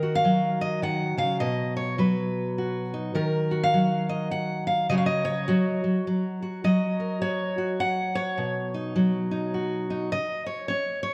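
A fingerpicked steel-string acoustic guitar opens alone and carries this short solo folk passage, cut from a longer piece, from its first moment to its end at 11.1 seconds. The dreadnought sits up front with a dark, full-bodied tone, moving at 104 BPM in 3/4 with a lilting swing on the eighth notes. Its harmony drifts from Ebm7 through Cb, Ebm, Dbsus4 and Gb to a closing Cbadd9, ranging from Cb3 up to Gb5 and giving the mood a hopeful yet nostalgic cast. At 10.1 seconds the chords fall away for a brief final stretch. A moderate scoring-stage reverb lends the guitar a sense of space around its up-front sound.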